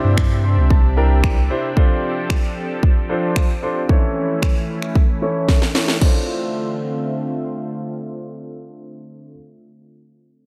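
A clear grand piano and a lush, detuned unison pad open together at once, the piano's intimate tone carrying audible action noise and a slapback echo while both pulse under sidechain pumping and a low-pass filter, as a barely audible downlifter slips by in the first seconds. This bittersweet, driving dance-pop cut from a longer piece moves at 113 BPM in straight 4/4, set in D minor, and a filter sweep runs through its opening stretch while the piano adds a fill early on. A saturated, thick sub bass with a fast attack sits up front but drops out at 1.5 seconds, and the electronic house drum kit enters at 0.2 seconds with a punchy kick, cracking snare, finger snaps and crash cymbal. The harmony moves from Cadd9 through F6 and A/E, and a drum fill around 5.5 seconds leads into a new section on Dm7 at 6.0 seconds. The drums stop at 6.1 seconds, leaving the piano to carry on beside the bright, chorused pad's sustained chords beneath light reverb.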